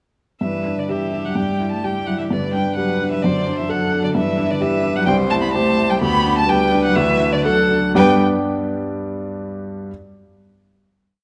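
Cheerful and graceful, this complete classical-period movement for piano quartet in G major moves at a quick 127 BPM with a rubato feel: a smooth first violin with vibrato sings the melody, a rich second violin weaves independent inner lines and sustained chords, and an intimate, airy sul tasto cello doubles the tune at the octave, over a warm baby grand piano whose rocking broken chords carry audible action noise and ring on alone from 8.2 s through the final chord until 9.9 s, bathed in a wet recital hall reverb.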